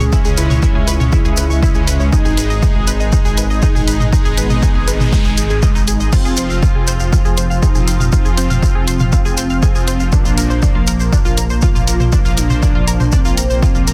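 A steady, straight 4/4 pulse at 120 BPM drives this melancholic excerpt of melodic techno, where a punchy, tape-warm electronic kick sits up front with a house drum kit of crash, warm hi-hats and toms, a grainy shekere, and a dark, rumbling detuned saw bass that pumps under the kick, while a fat sub-octave analog lead with vibrato and dub echo, a tight filter-plucked arpeggiated synth with 12-bit grit and digital delay, and bold brassy pad stabs with tremolo move through Dbm7, Abm, Fm and Bbadd9, a faint noise sweep entering in the background at 4.7 seconds, all in a dry, dense, heavily limited mix.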